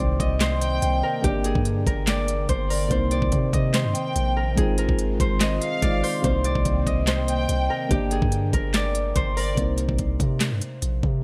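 Hip hop trap in C minor at 144 BPM with a half-time feel, brooding and melancholic, cut from a longer piece: a bright, ringing fingerpicked Celtic harp carries the melody through tape echo over a dark, intimate felt-muted upright piano whose action noise is audible, while a deep, sine-like 808-style bass sustains long decaying notes beneath. An overdriven trap kit sits up front with a knocking kick, sharp snare, crisp hi-hats and handclaps, and a breathy, detuned pad with chorus hovers in the background. A rich studio violin section with light vibrato adds a smooth second line through tape echo from 0.6 seconds until it drops out with the pad at 9.6 seconds, all in a dry mix.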